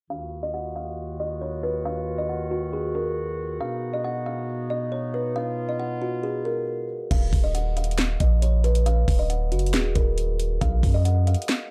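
Brooding and dark, this half-time trap excerpt opens with a woody, ringing kalimba melody over mellow, lightly vibrato woodwind chords, both low-pass filtered under a filter sweep, until at 7.1 seconds the woodwinds drop out and a deep, sine-like 808 bass arrives with a trap kit of knocking kick, sharp snare, handclaps, metallic hi-hats and crash, all in a dry, dark production.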